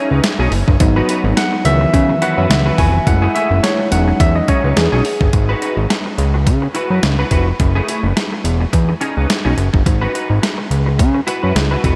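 A barky tine electric piano opens this early-eighties boogie funk excerpt with a bright, lightly overdriven solo through a combo amp, moving over rich jazzy chords from Emaj13 through G#m7, C#m11 and F#m9 until 5.3 seconds. Beside it from the start, an electric guitar at the edge of break-up plays a dark, picked, compressed riff colored by analog chorus, while a fat analog bass joins almost at once, thick and saturated with a sawtooth bite, a filter pluck and a sustained tone sitting up front. A clean 12-bit digital drum machine follows at 0.2 seconds with hi-hat, a thumpy kick and a medium-tuned snare, overdriven and re-recorded in a large room for a sampler-style punch. The groove runs at 106 BPM in 4/4 with a light swing on the sixteenths, danceable and smooth in E major. After the piano drops out, the guitar, bass and drums carry the second section through G#m7, C#m7, F#m9 and Emaj13, all of it soaked in a huge ambient reverb that gives the mix a dreamy haze.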